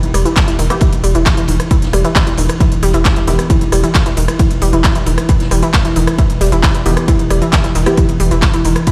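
Relentless and intense, this driving peak-time techno cut runs at 134 BPM in E harmonic minor, built on a heavy, tape-warm electronic kick that enters at 0.4 s and a deep, saturated sub bass pumping against it, with a techno kit of smooth hats, handclaps and rim clicks. A round, nasal analog pluck riff with chorus and delay weaves through the groove over an evolving analog drone in the background, while a muted, dark dub chord stab with phaser and delay surfaces from 0.7 to 3.5 s and again near the end. A dark-cymbaled street-band kit of ride and snare sits low in the mix, and the whole excerpt sounds as if played on a big sound system in a bare stone room.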